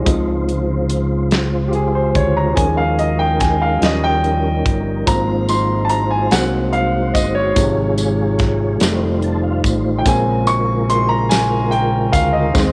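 Hopeful and jubilant, this slow gospel piece moves at 48 BPM in a straight 6/8, heard as a fragment cut from a longer performance. A woody upright piano sits up front with long sustain and takes the lead as a solo throughout, moving over chords such as Dbmaj7, Eb7sus4, Ab7/C and F7 before settling on Bbm7. Beneath it, a soft, flute-like tonewheel organ holds sustained chords through a fast rotary speaker and chorus vibrato, stepping forward with a brief fill from 8.8 to 10.1 seconds. A round, dark fingered electric bass anchors the low end while an acoustic studio drum kit with a punchy kick, medium-tuned snare and hi-hat keeps time, closing with a fill at 12.5 seconds. A jingly tambourine joins at 5.1 seconds, and light reverb with small room ambience gives the band an intimate, close feel.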